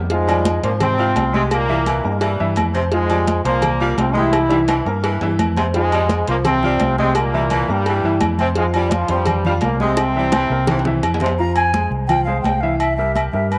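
A punchy, bright trombone section carries the melody up front in this fiery salsa excerpt at 170 BPM in F harmonic minor. A clear saxophone section sits behind it in the background, while a woody upright piano and a dark, amped fingered electric bass move between Fmadd9 and C7. High-tuned congas, low-tuned cowbell and bongos, and ringing agogo bells and timbales drive the groove, with drum fills at 4.3 and 10.0 seconds, and the mix sits in a moderate spring reverb. As the horns fall away, a mellow, distant jazz flute takes the melody at 11.4 seconds for the closing section.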